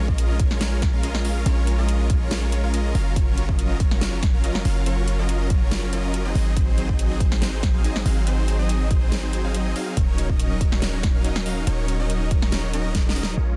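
A dense, heavily limited modern master set in digital ambience frames this dreamy, bittersweet future bass excerpt, cut from a longer piece and riding a half-time feel straight through a drop. Lush, detuned supersaw chords carry the riff from the start, their bright sawtooth unison sitting under sidechain pumping, a low-pass filter and digital delay as they move through Bbm7, Gbmaj7, Ab7 and Ebm7. Beneath them, a deep, boomy 808-style bass with a sine tone and a noise layer pumps with the sidechain, striking fast and decaying. A punchy, tape-warm electronic kick leads the drums, joined by a dubstep kit whose huge snare and metallic hats are both filtered low-pass. A short drum fill at 12.9 seconds closes the passage.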